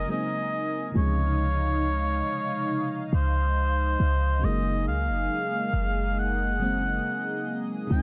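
A tender, romantic contemporary R&B excerpt at 69 BPM opens with a warm oboe up front carrying the melody in a classical style, with light vibrato and a touch of delay. Beneath it sit a dreamy, chorused and phased FM electric piano with a soft pad layer and a smooth, detuned analog pad with a slow attack and long release. A deep, boomy 808-style bass anchors the harmony as it moves from Gb69 to Dbmaj9 and returns to Gb69 at 4.4 seconds, all set in a light digital ambience.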